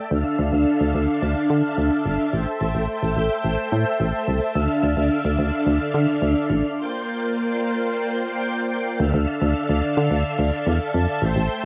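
A punchy, round FM bass sits up front, its dark, fast-attack notes decaying beneath an organ-like ensemble string pad whose vintage, evolving tone carries an ensemble chorus and cassette tape coloring. This melancholic, nocturnal synth-pop fragment, cut from a longer piece, moves through Dmadd9, Am7 and Bb6 chords and a break from 6.8 to 9.0 seconds before returning to its opening harmony. A wet studio reverb and the hazy character of a home cassette recording give the whole a late-night intimacy.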